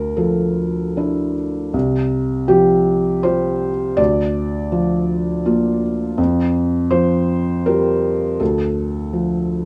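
In a rubato 3/4 lilt, this short, hopeful and tender neoclassical minimalist fragment features a solo felt-muted upright piano, soft, intimate and up front, ranging from C2 to D5 through Dmadd9, Csus4, Bb/D, Fsus2 and Dm in a moderate studio reverb across its 9.7 seconds.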